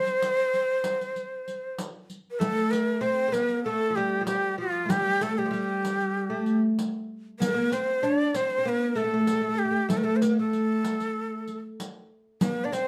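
Warm and passionate, this excerpt from a longer Arabic maqam ensemble piece moves at a steady 96 BPM in a straight 4/4, set in C maqam rast. A breathy, bright ney carries the melody up front, its end-blown reed cane tone reedy and lifted in the highs, with vibrato and a soft attack. Beneath it the oud plays a second line in a lower register, its fretless, plectrum-plucked double strings sounding woody and close. The riq enters at 0.1 seconds and sits lower in the mix, adding bright jingles under soft hands with a small-room quality. A brief opening passage gives way at 2.4 seconds to a longer second section, all within a dark production and a wet studio reverb.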